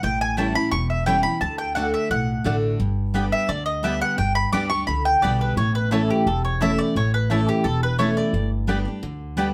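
Light reverb surrounds this lively, virtuosic bluegrass excerpt in straight 4/4, where an up-front, round-toned mandolin carries the melody until 8.5 s over a full-bodied dreadnought guitar's picked accompaniment and a woody, thumpy pizzicato upright bass, while a second, warmer mandolin adds stabs from 0.4 s as the harmony moves from A7 and D into a new section at 2.8 s built on G and A.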